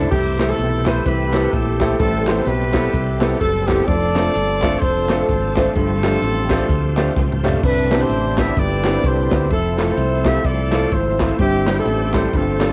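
Uptempo gospel at 128 BPM with a swinging 4/4 feel in C major, this soulful, jubilant clip cut from a longer piece has a mellow, tight horn section carrying the melody up front over a dark, round fingered electric bass. A clear baby grand piano with audible action noise plays accompaniment, while a bright tonewheel organ holds shouting, lightly overdriven sustained chords in the background through chorus vibrato and a slow rotary speaker. A punchy, airy big-band drum kit adds a fill at 7.2 seconds, hollow group handclaps join at 0.4 seconds, and the piano, organ and drums carry a cassette-tape character within a lightly reverberant home recording.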